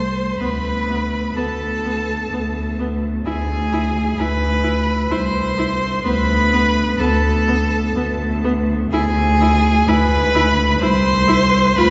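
Two bowed violins and an up-front, warm cello open this slow, rubato, romantic string-quartet excerpt in 3/4 at 63 BPM, the lead violin singing a yearning, elegiac melody with rich vibrato and portamento high above a focused second line, while the cello holds the low bass and a smooth, even viola joins at 0.4 s, the harmony moving between Bm7/D and E7/D as the quartet is heard from further back in a wet church reverb that dulls the upper treble.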